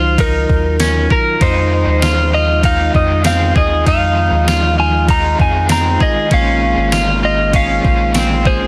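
A gated 80s digital drum machine sets a straight 4/4 pulse from 0.2 s, its thumpy kick, ride cymbal, tambourine and overdriven snare wrapped in gated reverb and sounding re-recorded in a large room. Beneath it a round analog bass holds deep, dark, sustained notes with a filter sweep, while a percussive tonewheel organ spins soft, flute-like chords through chorus vibrato and a slow rotary speaker. An electric guitar at the edge of break-up plays twangy fingered arpeggios with subtle chorus and digital delay, and a compressed, slightly broken-up electric slide guitar carries the melody on top through its own digital delay. From 1.4 s a raw garage guitar adds bright, overdriven, double-tracked accompaniment with tremolo and analog chorus, sitting in the background. The harmony moves from Ebm9 to Fm7 and then Bbm9, and the dry, dense, heavily limited master gives this floating, dreamy dream pop fragment a close, full sound.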